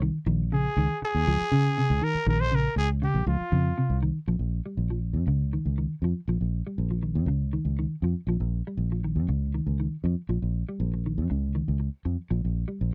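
Funky and hypnotic, this afrobeat passage, cut from a longer piece, moves at 120 BPM in a straight 4/4 in Bb dorian, with a dry, close 1970s-style studio sound and light reverb. A round, foam-muted fingered electric bass sits up front, while a dark, clean electric guitar plays fingered arpeggios with subtle chorus. A raspy, growling trumpet solos from 0.5 s to 4.0 s over Bbm7, Dbmaj7 and Bbm chords, with bright vibrato, before the harmony settles into a repeating Bb5 and Db alternation from 4.3 s.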